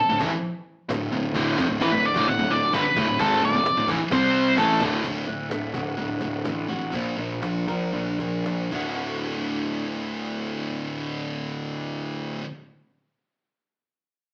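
Quiet-loud alternative rock in D major at 110-130 BPM, anthemic and restless, opens with a dark octave-fuzz lead guitar solo over an up-front overdriven guitar riff, a thick fuzz guitar riff, punchy fuzz picked bass and a snappy cajon in the background, then at 5.0 s the lead gives way to a twangy, lo-fi guitar through a small old amp playing arpeggios as the pace slows, all heard through a wet studio reverb with the band playing live in one room and an AM radio sound.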